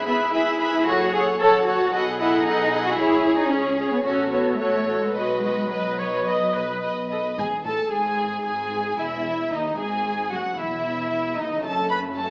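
A rubato 4/4 pulse carries this lively, spirited classical-period orchestral excerpt, where an intimate sul tasto violin section sings the melody over a focused second violin line, smooth, distant violas, up-front cellos with expressive portamento and soft-attacked double basses, while calf-headed timpani sound briefly in the background at 7.4 s, all set in a wet recital-hall reverb with an AM radio sound.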